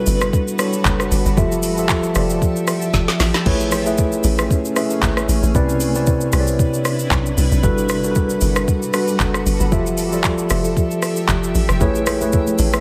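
A lightly swung sixteenth-note groove in 4/4 drives this relaxed amapiano excerpt, carried by an electronic R&B kit that enters at 0.1 s with a soft kick, woody snare, metallic hi-hats, rim clicks, shaker, handclaps and crash, all tape-tinged and up front, with a drum fill at 2.9 s. Underneath, a tight log drum bass thumps out the low end with a punchy, fast-attack FM tone, a noise layer and a decaying tail. A mellow tine electric piano, clean and up front, plays the accompaniment through the piece's gentle cycle of major-ninth chords, moving from Gmaj9 and Fmaj9 to Amaj9 and Cmaj9. Behind it, a quieter granular pad hovers with cloudy, blurred, warbling sustained chords, its vintage unison triangle tone swimming in built-in reverb and phaser with a slow attack and long release. Close, high-tuned acoustic congas slip in very quietly at 11.8 s with a ringing hard-hand sound. The whole mix sits in a light reverb that keeps the mood relaxed and warm.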